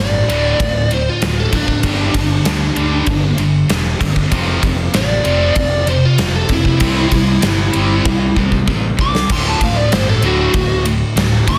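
A straight 4/4 pulse at 96 BPM drives this swaggering, energetic hard rock excerpt, where a biting, overdriven lead guitar with slapback echo solos throughout over two heavy high-gain rhythm guitars playing distorted riffs in the background (one scooped), a growly, amped fingered bass, and a punchy, polished gated 80s drum kit that enters at 0.3 seconds, sits up front with bright cymbals in an airy stone room, and drops a fill from 8.1 to 9.3 seconds, all moving through D5, G5, F5, C and D chords in a dense, heavily limited modern mix with light reverb.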